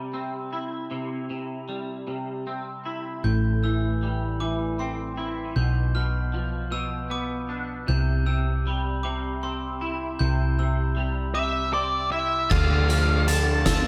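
In a straight 6/8 at 52 BPM, this brooding, cinematic post-rock excerpt opens on a twangy, scooped electric guitar arpeggiating through ensemble chorus and analog delay. At 3.2 seconds it is joined by sparkling, bell-like brass-mallet glockenspiel arpeggios and a round hollow-body bass, and an octave-fuzz lead guitar carries a distorted melody from 11.3 seconds. Then at 12.5 seconds, as the harmony shifts to Dmadd9, soft sul tasto chamber strings float in the background beneath an oversized, low-tuned drum kit with a punchy kick, fat snare and dark cymbals in a pumping stone room, the whole set in light small-room reverb.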